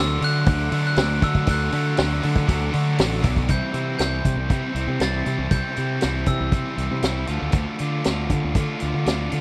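A straight 4/4 beat at 119 BPM drives this carefree, jangly indie rock excerpt in C major, with a vintage acoustic kit entering at 0.2 seconds, its high-tuned snare and punchy kick up front in a dry, close 1970s-style studio sound. A biting, double-tracked overdriven guitar picks out a riff over a round, dark fuzz bass as the chords move from D to C and then to D minor at 7.3 seconds. Above them, a glockenspiel struck with hard plastic mallets rings out a sparkling, bell-like melody with slapback echo until 7.2 seconds.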